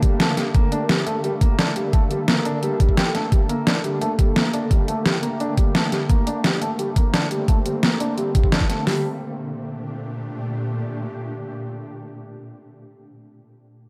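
This dark technical drum and bass excerpt in G minor opens at 173 BPM on a Gmadd9, with a swarming, detuned, granular drone holding sustained chords with sidechain pumping and its own built-in reverb. A felt-muted upright piano plays soft, mellow arpeggios through a filter sweep, low-pass filter and delay, while two layered dubstep drum kits sit up front, overdriven, their knocking kick, deep snares and bright hats driving the aggressive, tense mood. The drums fall away at about 8.9 seconds and the piano at 9.0, leaving the evolving drone alone until 12.4 seconds.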